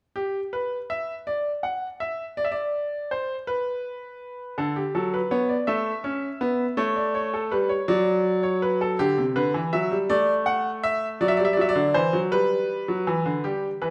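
Set in a steady, straight 6/8, this short passage from a longer classical piece is a lively, joyful baroque-style two-part invention played solo on a bright baby grand piano. The piano sits up front with a brilliant yet natural tone from 0.2 to 13.9 seconds, its two lines ranging from C3 to F#5. The harmony opens unaccompanied by chords, then moves through D, A and A7 before settling on G, all carried by the generous bloom of a recital hall reverb.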